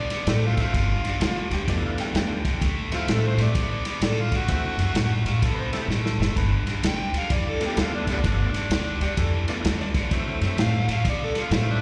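A gritty, overdriven harmonica leads this rollicking yet laid-back electric blues shuffle at 128 BPM, its jazz-style solo full of tongue slaps, scooped notes and vibrato, and coloured by slapback echo and analog delay, while a bright, picked overdriven guitar riff and a thick organ with slow rotary speaker and chorus vibrato move between D7 and G7. Underneath, a woody pizzicato upright bass and a muffled, lo-fi vintage drum kit with dark cymbals sit up front, the drums adding a fill at 5.9 s, and a slightly detuned upright piano with audible action noise plays a second line in the background from 1.5 s to 10.3 s. The passage, cut from a longer piece, sounds like a live gig heard through a venue's PA with a recital-hall ambience.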